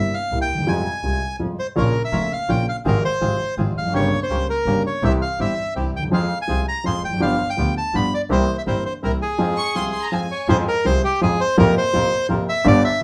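Passionate and tense, this tango excerpt moves in a flexible, rubato three-beat metre, its harmony darkening through diminished and dominant seventh chords. A reedy bandoneon carries the melody up front, while a grand piano with deep bass fills in the accompaniment beneath it. A bowed double bass, focused yet distant, anchors the low end, and from 1.8 s a second, darker bandoneon adds stabs in the background. A lush violin section with a soft attack and expressive vibrato briefly lifts a second line at 9.6 s, just before a new section begins at 10.5 s. The band sounds as if it were playing live together in one room, with a short, wet ambience around it.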